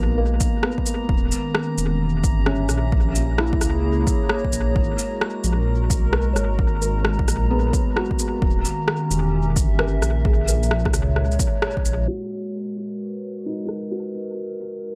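Melancholic and rainy, this future garage passage, cut from a longer piece, sways in 4/4 with a swung sixteenth-note feel. A felt-muted upright piano plays soft, intimate accompaniment with audible action noise and analog delay, while a warbly, tape-like pad holds lo-fi, nostalgic chords under chorus and reverb, both breathing with sidechain pumping. A dark detuned saw bass sits up front, deep and rumbling with beating unison tones and saturation, and a glassy texture of drifting overtones floats calmly in the background. Punchy, overdriven electronic kick drums and a layered electronic shaker and rim click, the latter dub-echoed and low-pass filtered, drive the groove toward a band accent at 11.6 seconds. By 12.1 seconds the kick has dropped away and the bass and glass texture stop as well, leaving piano, pad and shaker under a filter sweep until the shaker ends at 14.7 seconds, all of it steeped in an echo-heavy digital ambience.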